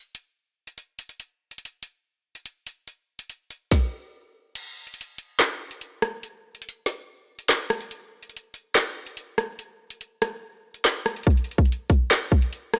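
A drill drum kit drives this menacing hip hop excerpt, its electronic, produced sound sitting up front with a hard-clipped kick, a woody snare and metallic hats. The tempo is 143 BPM in 4/4, felt at half-time, giving the groove an ominous weight. Crash cymbal, handclaps and rim clicks fill out the kit alongside the kick, snare and hi-hat, all arriving at 0.1 seconds. At 4.6 seconds the kick drops away, leaving the rest of the kit to carry the pulse until the kick returns at 11.3 seconds. The recording is dry and gritty, with a touch of light reverb, and the piece is cut from a longer work, stopping at 12.8 seconds.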